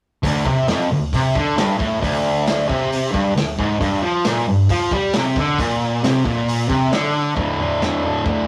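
A straight 4/4 groove at 135 BPM drives this swaggering, raw garage rock excerpt, where a bright, double-tracked fuzz guitar riff sits up front between D2 and G3 over power chords moving from D5 to G5 at 3.8 seconds and back at 7.4 seconds, backed by a gritty, mid-forward acoustic drum kit of hi-hat, tight kick, medium-tuned snare and toms with a rolled-off top, all captured as a rough rehearsal-room recording with saturation and a small room ambience.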